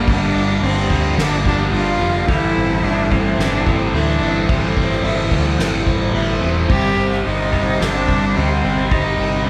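Melancholic and cinematic, this post-rock passage, cut from a longer piece, carries a bowed cello melody with a nasal, focused vibrato over a very quiet chamber string section holding hushed sul tasto chords. Up front, an overdriven electric guitar plays a riff through a phaser, while a clean electric guitar picks arpeggios in the background, a round, dark fingered electric bass anchors the low end, and a distant drum kit played with soft mallets brings a fat snare, punchy kick, ride and crash cymbals. The harmony moves from Gm7 to Am/G and Cm/G, and a wet recital-hall reverb surrounds the ensemble.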